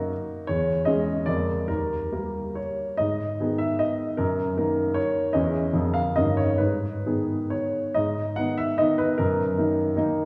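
A solo baby grand piano, natural in tone with short sustain and placed up front, plays a nostalgic, capricious romantic triple-time dance in G# minor with dotted rhythms in 3/4, moving with rubato between 123 and 166 BPM through chords such as C#m/E, A#7/E#, D# and G#m, all set in a wet concert hall reverb heard from further back, with a touch of small room ambience, in this 10.3-second excerpt cut from a longer piece.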